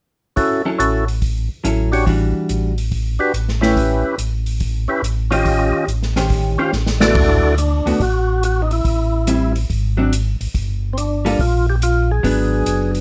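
Swinging and greasy, this soul jazz organ trio excerpt moves at 142 BPM in D major with a firm swing, a percussive tonewheel organ carrying the melody through a slow rotary speaker, its key click and second harmonic percussion up front. A dark, picked hollow-body jazz guitar comps alongside with a compressed, clean sound, while a mellow, round tonewheel organ handles the bass line, also turning through a slow rotary, and a big-band drum kit with a punchy kick and polished, airy cymbals swings underneath. A drum fill from 6.7 to 7.2 seconds leads into a new section at 7.2 seconds, all set in light reverb with a soft top end.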